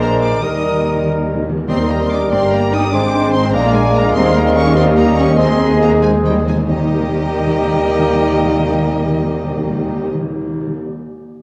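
In a straight 6/8 at 88-99 BPM, this lively, cheerful classical-period movement for orchestra in Eb major, cut from a longer piece, sets rich, vibrato-laden violins on the melody above a very quiet second violin line, a dark cor anglais and a hollow silver flute, with a mellow bassoon and distant, even violas in support, hushed horn chords and background trumpet stabs, cellos sliding with portamento, an up-front, lush double bass section, and articulate hard-mallet timpani fills at 0.4 and 5.4 seconds, the music slowing from 3.5 seconds inside a moderate scoring-stage reverb and a worn, warbling cassette-tape pitch drift.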